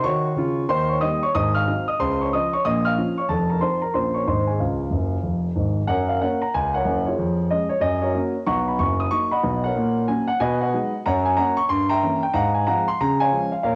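A brisk, swung 4/4 pulse drives this exuberant stride piano excerpt, which is cut from a longer piece. A lone grand piano carries everything here, its tone dark and mellow yet placed up front, ranging from deep bass notes to high upper notes. The opening passage moves through a lively chain of minor and dominant seventh chords, capped by a piano fill from 4.9 to 5.9 seconds that leads into a new key. The second passage then travels through major seventh, sixth and diminished colours before settling home as the excerpt ends at 13.8 seconds. A moderate spring reverb and a small room ambience surround the piano, and the cassette tape character gives it the feel of a home recording.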